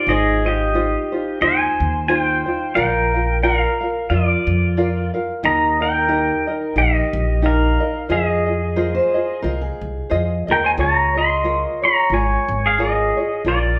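A loping 90 BPM swing in 4/4 sets up this sunny, languid Hawaiian excerpt in Ab major, where a clean, twangy electric pedal steel guitar sits up front with the melody, played with fingerpicks and slide and shaped by volume swells. A light, fingerpicked tenor ukulele picks out chords from Ab6 through Fm7 to Db6, while a pizzicato upright bass on steel strings sits close and dark beneath it. From 8.8 to 10.2 seconds a woody dreadnought acoustic guitar with old strings adds a brief fingerpicked second line, the whole band heard playing live together in a large studio room with moderate reverb.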